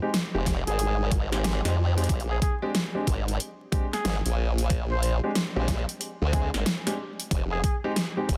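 A saturated, formant-filtered wobble bass sits up front in this gritty, playful glitch hop excerpt at 92 BPM, swung on the sixteenths over Fm7 and Bb13 chords. An overdriven, knocking electronic kick and a dubstep kit with a huge snare and bright hats drive the groove, while short grand piano stabs pump against the sidechain and trail digital delay. From 0.7 s a mellow, breathy trumpet solo with vibrato and scooped notes floats above in a jazz style, set in light digital ambience with a dense, heavily limited master and vinyl crackle.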